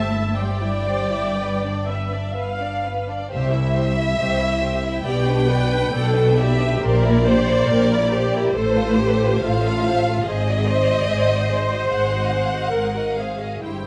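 Warm and lyrical, this slow romantic movement for string orchestra, cut from a longer piece, unfolds at 70 BPM in a rubato 4/4, with an expressive first violin section singing a soft-attacked melody with vibrato and portamento over a lush second violin line, smooth viola accompaniment, a dark cello bass and an even double bass, all bowed together in a recital-hall reverb as the harmony drifts from C/G through C7/Bb and F/A to Ab7.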